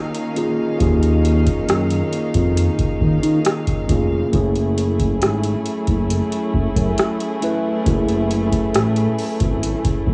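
Contemporary R&B at a slow 68 BPM in straight 4/4, sensual and longing, this brief excerpt moves from Ebm7 to Gbm7 at 4.3 seconds, with a mellow, clean tine electric piano and a dark chamber string section, bowed sul tasto with light vibrato and a soft attack, both carrying a cassette tape colour from the start. A booming analog drum machine enters at 0.1 seconds with a deep kick, metallic hats and rim clicks, dry and up front, and a smooth sawtooth-and-square synth bass with vibrato and a fast attack joins at 0.8 seconds, sitting dark and prominent beneath. The whole has the intimate feel of a home cassette recording with digital studio ambience.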